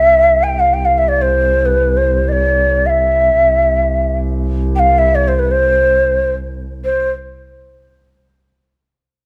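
A breathy, mellow end-blown ney carries a stately, warm Persian modal melody with expressive vibrato and crisp attacks over a dark, bowed double bass drone on C2, the bass shaded with soft attacks, vibrato and portamento, all caught by close, detailed microphones in light reverb, until the bass stops at 6.9 seconds and the ney at 7.1 seconds in this fragment of a longer piece.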